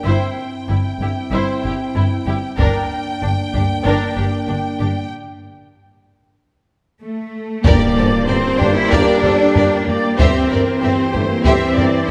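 Moving at a straight 95 BPM in 4/4, this brief cut from a heroic, dark orchestral film score in G dorian opens on lush bowed strings, with violins carrying a focused vibrato melody over a second violin line, intense violas, close cellos and background double basses, all cushioned by mellow French horns and a moderate scoring-stage reverb. Hard-stick taiko drums break in at 2.6 seconds, and after a break and drum fill they return at 7.7 seconds along with bright close-miked trombones, a very quiet distant tuba, a soft string pad, a dry timpani hit and a huge, dark impact. The harmony moves from C over G to G minor, pauses on a chordless break, then lands back on G minor for the fuller closing passage.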